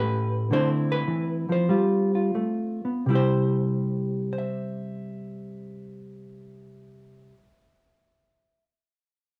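Swung eighths in a loose rubato 4/4 give this brief solo jazz excerpt its swinging, sophisticated feel, as a dark, clean, fingered electric hollow-body guitar sits up front in moderate studio reverb, slowing down through the opening 3.1 seconds over A9, Dm9 and G9sus4 before settling on C for the closing stretch to 8.6 seconds.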